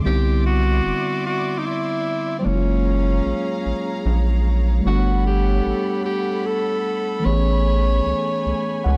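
R&B in a slow, tender 6/8 at 50 BPM, where a breathy, whispered tenor saxophone with digital delay carries the melody up front over a mellow tine electric piano, dark bowed strings playing sustained chords and a rubbery, bouncy square bass, moving through Cmaj9, F#maj9, Gmaj9 and Amaj9 in a small room before an electric piano fill at 8.4 seconds closes this brief cut from a longer piece.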